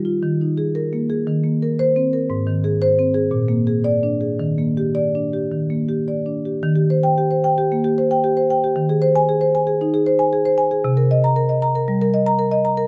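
A flowing rubato pulse in 4/4 at around 115 BPM carries this warm contemporary classical piece for solo marimba in Eb major. Soft mallets draw a mellow, round tone spanning Ab2 to Bb5, and the harmony moves through Cm7, Ab and Bb7 to settle on Ebmaj7 before a second section from 6.6 seconds drifts between Eb6, Ab/Eb and Cm7. The close, detailed, nearly dry recording keeps the instrument up front, and the fragment is cut from a longer work at 12.9 seconds.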